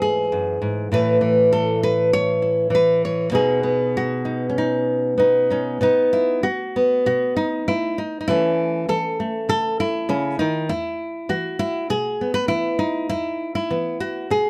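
Folk solo fingerstyle guitar, peaceful and pastoral, in which a classical nylon-string guitar, fingerpicked and up front in light reverb, plays rubato at about 99 BPM in E major, tuned to A4 = 445 Hz, moving from E/G# through A and B before a second passage from 5.8 seconds settles from A/C# onto E in this cut from a longer piece.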